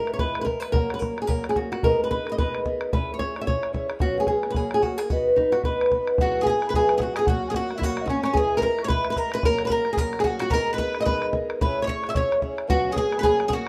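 Bright and cheerful, this Celtic reel runs at 221 BPM in 4/4 with a swung feel, led by an up-front flamenco guitar whose fingerpicked melody carries audible finger squeak over a dark, woody twelve-string acoustic guitar with a shimmering, octave-doubled character and an open, boomy bodhran kept close and dry. At 6.2 seconds the second pass of the tune brings in a metallic, double-strung Irish bouzouki and a hollow, airy mid whistle with vibrato and a crisp chiff, the whistle sitting in the background. The players share a moderate small room, with the harmony moving through G#madd9, C#m and F#sus4 in a passage taken from a longer piece.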